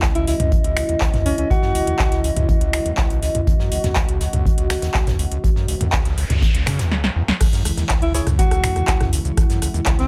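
A squelchy, distorted acid bass riff drives this gritty acid house cut, pushed along by a deep, overdriven electronic kick, a tape-warm analog drum machine with punchy snare and metallic hats, and a very quiet acoustic kit with hi-hat and snare set in a small room. A detuned sawtooth pad holds sustained chords with chorus, sampler grit and sidechain pumping, while a warbling, nostalgic lo-fi pad drifts above and then drops away. A breathy, distant alto saxophone plays brief solo lines through dub echo, an electronic noise sweep runs from 5.7 s into the drop at 7.4 s, and a hollow, nasal organ stab punctuates it at 8.1 s.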